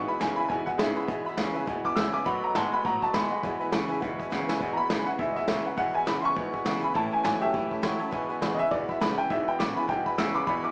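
Rockabilly at a rowdy, rollicking 204 BPM with a swung feel in E mixolydian, this excerpt has a clear, woody upright piano soloing up front throughout, alongside a twangy, scooped electric guitar riff low in its range. Behind them, a bright, full-bodied acoustic guitar, a jangly, metallic tack piano and a thumpy, gut-strung upright bass fill out the accompaniment, while a dark, smooth brush kit with a tight kick plays from 0.2 seconds and drops a fill at 4.3 seconds. The band sounds live in one room, with moderate large-studio reverb and a small-speaker character.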